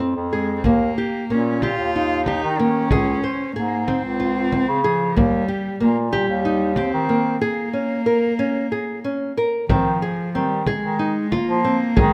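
Fingerpicked nylon-string guitar arpeggios and a clear, vintage-toned bass clarinet carrying the bass line with vibrato open this playful, restless contemporary chamber piece in 7/8 at 186 BPM (eighths), set in Eb mixolydian. A bowed cello enters at 0.3 seconds with an intimate, soft-attack sul tasto melody, and a deep frame drum struck with hard hands joins at 0.6 seconds. A break arrives at 7.4 seconds before the harmony moves to an Ab69 over Eb, all captured up close with light reverb in this fragment cut from a longer work.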